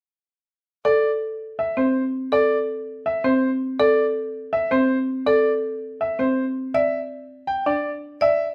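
A straight 4/4 pulse at 163 BPM drives this hypnotic, propulsive fragment of minimalist classical pattern music in C major, where a bright, brilliant grand piano with short sustain carries the melody up front while a woody, dark marimba struck with medium hard mallets spins percussive, smooth arpeggios close beside it, both entering at 0.8 s over a C5 chord until the harmony drops away at 6.7 s, the pair sitting in a moderate large-studio reverb.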